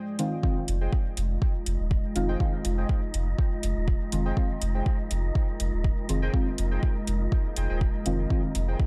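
Dub techno at 122 BPM in F minor, this nocturnal, deep excerpt sits on a single Fm7 chord as an overdriven, up-front kick and metallic hi-hat drive a swung 4/4 groove over a round sub bass, while soft detuned chord stabs and warbling lo-fi keys trail dub echo and phaser, a moody sawtooth pad holds sustained chords, and a breathy wind-like noise texture enters at 1.3 seconds, with pad, stabs, bass, keys and texture all pumping against the kick in a dark, dry production.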